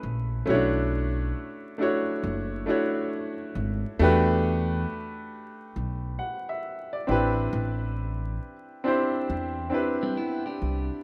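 A smooth, vintage-toned upright piano with a low-pass filter carries this reflective, nostalgic hip hop excerpt at 68 BPM with a 16th-note swing, moving through Bm11, Em11 and Am11 alongside a thumpy, woody pizzicato upright bass. Near the close, at 10.0 s, a clean, compressed electric guitar enters as a second line, also softened by a low-pass filter. A lush hall reverb and vinyl crackle give the rough home-demo mix a hazy, dusty feel.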